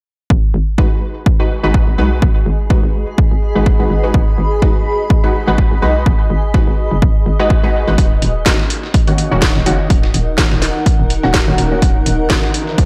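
A bold, bright orchestra-hit-like synth stab punctuates this aggressive, bouncy bass house excerpt at 125 BPM in G# minor, its detuned sawtooth layers carrying reverb, phaser and tape echo as they pump with the sidechain. Underneath, a hollow, knocking FM bass with overdrive sits dark and punchy in the low register, while a punchy, tape-warm electronic kick drives the 4/4 groove up front with a swung sixteenth-note feel. From 2.5 seconds a cloudy granular pad drifts in high above, blurred and evolving with subtle chorus and its own reverb, also breathing with the sidechain. At 8.0 seconds the harmony moves from G#m7 to D#m7 as a gritty, compressed sampler-style kit adds hi-hat and a fat snare recorded in a large room, joined moments later by a cracking electronic snare. A very quiet riser enters at 12.2 seconds, and the mix sits in light reverb throughout.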